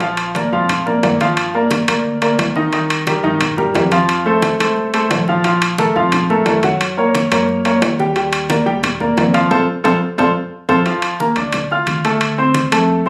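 Salsa in a sunny, joyful mood, cut from a longer piece, with a brilliant baby grand piano up front carrying the accompaniment over a woody, growly pizzicato upright bass, ringing metal-shell timbales and hard-handed, low-tuned congas set in the background, the band hitting an accent and the drums a fill just before the harmony turns to Dm at 10.9 s, all caught by a phone in a studio room with moderate reverb.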